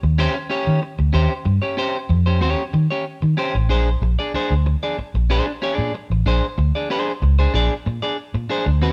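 A dark, round, foam-muted vintage fingered electric bass sits up front in this gritty, strutting funk groove at 94 BPM in 4/4 with a straight feel, moving from Eb13 to Bb9 at 3.7 seconds within Bb mixolydian. A bright, twangy, slightly broken-up picked electric guitar, also up front, supplies the accompaniment alongside it. The band plays live together in one room with light reverb, and this brief cut from a longer piece runs to 8.9 seconds.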